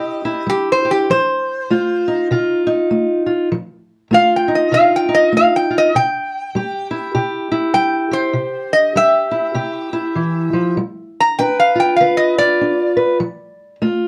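Acoustic country blues at 99 BPM with a soulful, swaggering swing, this excerpt sets a bright, metallic, nasal resonator slide guitar, played with fingerpicks and a steel bar, up front on the melody until 13.0 seconds, over a dark, boxy parlour steel-string acoustic guitar fingerpicking the accompaniment through 14.1 seconds as the chords move from C to F7, back to C and on to G7 and F, all in a dark production with light reverb.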